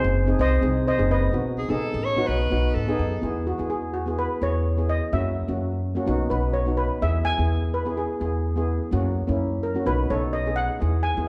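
Bathed in a reverberant concert-hall ambience, this sunny, bouncy calypso at 127 BPM in E major, cut from a longer piece, sets a shimmering double-seconds steel pan on the melody over a mellow second pan's accompaniment and a woody, growly pizzicato upright bass, while a bright alto saxophone with light vibrato and scooped notes adds a brief second line from 1.6 to 3.2 seconds, after which the melody pan takes a solo from 3.2 seconds onward.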